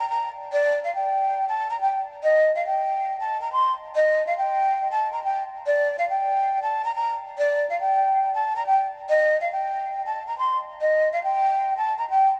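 This hip hop piece is brooding and hard-hitting, moving at 140 BPM in 4/4 with a half-time feel, in G minor and tuned slightly flat to A4 = 437 Hz. It is cut from a longer piece and centres on a solo jazz flute, which plays from 0.0 to 12.3 seconds in a range from D5 to C6. The flute has a metallic, breathy tone with a soft attack, expressive vibrato and lifted highs, and it sits up front. A low-pass filter and a digital delay shape its sound. The flute is set in a huge ambient reverb with a 7.2-second tail, layered over a small room ambience, which gives the short passage a deep, cavernous mood.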